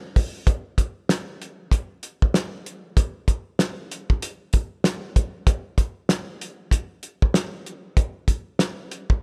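Hip hop at 96 BPM with a swung sixteenth feel, this dark, moody cut features a cloth-damped, thuddy acoustic drum kit of hi-hat, tight kick and fat snare, sitting up front with a rolled-off top in a small, dry room across its rough home-demo sound from 0.2 to 9.2 seconds.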